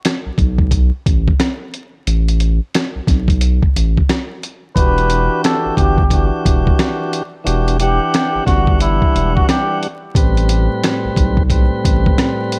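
The rhythm opens the clip on a dusty, sampler-style drum kit at 89 BPM in 4/4, its 16ths swung, with a thumpy kick, a medium-tuned snare, rim clicks and hi-hat sounding compressed and gritty, as if re-recorded in a large room. A deep, saturated sine sub bass joins at 0.3 s, thick and sustained with a fast attack, sitting up front with the drums through a break over Asus2. At 4.8 s the harmony shifts to Em9 as a tonewheel organ enters, full and lightly overdriven with vibrato and a tape-worn character, while a cup-muted trumpet takes a soft, veiled jazz solo with light vibrato until 9.8 s. The chords move to Am9 at 10.2 s, and the organ carries on with the drums to the end of this reflective, dark boom-bap fragment. The mix is dry and close, with vinyl crackle sitting prominently over the whole.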